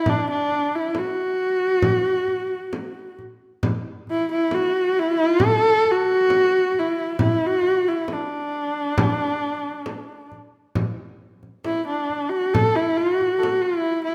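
In a straight 4/4 pulse, this proud, galloping Mongolian folk passage, cut from a longer piece, puts a husky, focused horsehead fiddle up front, bowed by one player with vibrato and portamento and a smooth top across D4 to A4, over a quieter acoustic frame drum, inside a reverberant recital hall, before moving into a new section at 10.8 seconds.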